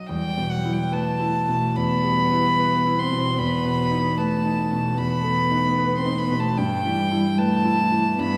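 Rubato in a slow 4/4, this solemn, yearning romantic movement for piano trio is cut from a longer piece. A clear concert grand piano with deep bass and long sustain carries the accompaniment, while a single bowed violin, pure and floating with a soft sul tasto attack, sings the melody up front. A dark cello enters at 0.1 s with an intimate second line touched by light vibrato as the harmony moves from Em through B7/E to Em/G, all set in a wet concert hall reverb of 2.2 s heard from further back in the room.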